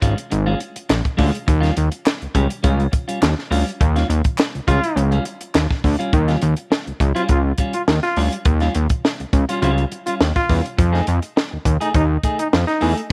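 A fat, thick analog bass with a detuned sawtooth tone and a filter sweep opens this driving funk excerpt up front. A dry, compact cocktail drum kit with a punchy kick, high-tuned snare and hi-hat sits alongside it, and a clean, picked electric guitar lies further back in a small room ambience. The harmony moves from Bbm7 to Eb9 at 1.5 seconds, and crisp, saturated group handclaps join in the background at 0.9 seconds. The band hits an accent shortly before a forceful, close-miked trombone enters at 4.7 seconds. The trombone plays a jazz-style solo line with a warm, scooped attack over the Eb9 harmony. At 10.8 seconds the chord shifts to F7#9 near the end of this cut from a longer funky groove.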